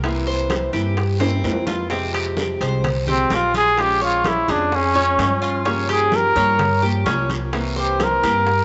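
A fingerpicked flamenco guitar with audible finger squeak, a woody, thumpy pizzicato upright bass and a background bed of damped congas, tight high-tuned bongos, ringing metal-shell timbales and a raspy guiro open this sultry Cuban son and guajira at 128 BPM in F harmonic minor, with a drum fill at 1.2 seconds. A bright, metallic Cuban tres adds picked double-string arpeggios from 0.3 seconds. A breathy, whispered trumpet with vibrato and a soft attack enters up front at 3.1 seconds for an intimate, pop-style solo over a light studio reverb.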